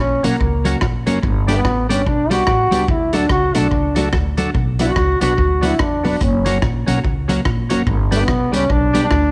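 A clear trombone with light vibrato and scooped notes carries the melody up front in this driving, mischievous ska piece cut from a longer work at 145 BPM with a swung feel, over woody pizzicato upright bass, dark clean electric guitar with analog chorus, gritty overdriven tonewheel organ stabs through a slow rotary speaker, and a vintage drum kit of punchy kick, hi-hat and rim click with tape echo in a pumping small room, all set in a moderate echo chamber reverb as the chords move through F#, G, D and Bm.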